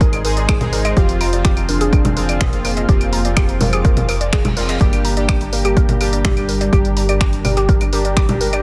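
Dark and hypnotic, this melodic techno excerpt pulses around an overdriven deep kick and a deep house kit of claves, congas, finger snaps and hi-hat, while a tight sawtooth sequencer bass, woody wave-folded pluck arpeggios, bold brassy synth stabs with dub echo and a lush detuned pad in the background all pump to the sidechain, a soft octave-layered lead with cassette tape colour drifts in at 1.0 s, and a reverse cymbal sweeps in at 4.2 s before the chords settle on Gm.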